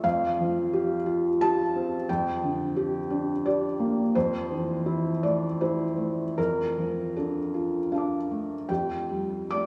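A long church reverb surrounds this short cut from a longer neoclassical minimalist piano piece, with a tail of about 2.7 seconds hanging behind every chord. At its centre sits a solo felt-muted upright piano, placed up front, soft and mellow, with the audible action noise of its keys and hammers adding a close, vintage intimacy. The music is peaceful and unhurried, moving in 3/4 at a rubato pace between 72 and 90 BPM, in F major with the instrument tuned to A4 = 436 Hz. Over a steady F in the bass, the harmony drifts from Fsus2 through Gm/F, Am/F and Dm/F before settling back on Fsus2 at 8.7 seconds. The piano spans from F2 up to D6, and the muted felt keeps even its highest notes smooth and gentle.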